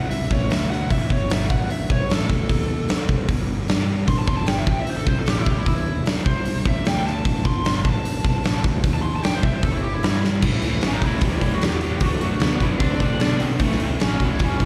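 Blues rock and southern rock from a power trio at 151 BPM in a driving, raunchy 4/4, this cut from a longer piece opens with a bright, overdriven slide guitar soloing with slapback echo over a round, fuzzy fingered bass and a huge, up-front arena drum kit with punchy kick and bright cymbals, until a drum fill at 10.2 seconds ushers in a double-tracked, compressed distorted guitar riff at 10.4 seconds over A, D and A chords, all heard as a live gig through the venue's PA with recital hall reverb.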